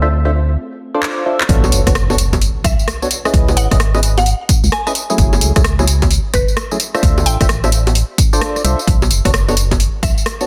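This skippy, soulful two-step garage excerpt opens on a silky string machine chord, heard only for the first 0.6 s in the background under a hollow, nasal organ stab with analog chorus and delay, while a dark, organ-like FM bass starts pumping beneath. The tempo sits at 130 BPM in B dorian with a swung 16th feel, and after a short break a drum fill from the house kit at 1.0 s leads into the drop at 1.5 s. There the punchy, tape-warm electronic kick arrives alongside the up-front kit of bongos, handclaps, hi-hat, rim click and tambourine, its snare softly clipped, as a very quiet electronic impact marks the entry. From 2.6 s a woody, round mallet-like pluck carries the melody, colored by chorus, cassette-tape wear and delay. Ninth chords drift from Bm9 through C#m9 and F#m9 to Dm9 and back, set in light digital ambience with a dense, heavily limited modern master.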